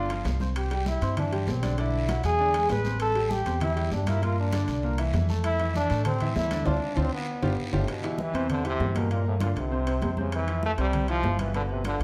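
A bright, punchy trombone with light vibrato carries the melody up front through this joyful, festive salsa excerpt at 197 BPM in C major, backed by brilliant, long-sustaining grand piano, a dark, woody pizzicato upright bass, high-tuned congas in the background, ringing metal-shelled timbales and a raspy guiro, all set in a large studio reverb, with a drum fill and band accent from 6.7 to 7.9 seconds leading into a new section.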